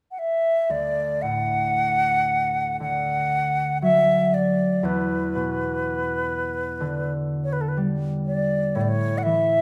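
Celtic folk slow air in D major, nostalgic and wistful, drifting in rubato at around 57-62 BPM in 4/4. A bright wooden flute opens alone at 0.1 s, carrying an airy, softly attacked melody with vibrato and lifted highs. A fingerpicked concert harp joins at 0.7 s with ringing, warm low accompaniment through D, Em7 and A. Both sit up front in a moderate recital-hall reverb, in a short fragment cut from a longer piece.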